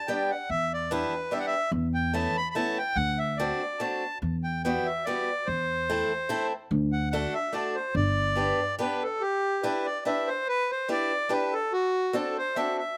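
Musette waltz at 144 BPM in a swung, rubato 3/4, whirling and nostalgic, cut from a longer piece: a reedy, single-reed accordion with dry tuning carries the melody up front with a slapback echo, a bright, boxy picked swing-style acoustic guitar with audible finger squeak picks out the accompaniment through the same echo, and a woody pizzicato upright bass plays until 8.5 s, before the music shifts from G major to E minor at 9.2 s in a close, dry outdoor recording.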